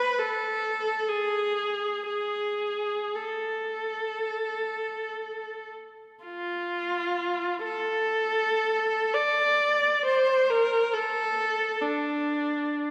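Mournful and lonely, this free-time classical fragment for unaccompanied viola unfolds expressively, cut from a longer piece. A single bowed viola plays alone from 0.0 to 12.9 seconds, its rich, focused tone carrying vibrato and sitting up front while still sounding distant, ranging from D4 to D5. A wet concert hall reverb with a 2.1-second decay surrounds the instrument, lending the solo line a spacious, solitary air.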